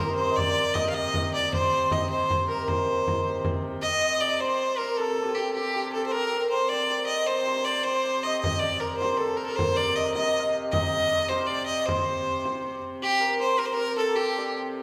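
Mysterious and driving, this cut from a longer medieval dance moves at 104 BPM in 6/8 in C dorian, with a clear, up-front bowed fiddle carrying the melody with light vibrato, a shimmering hammered dulcimer ringing out a second line, a nasal, reedy hurdy-gurdy holding a low C drone, and a close, dry frame drum played with soft hands from 0.4 to 3.7 seconds and again from 8.4 seconds, the whole performance set in the wet reverb of a church or concert hall.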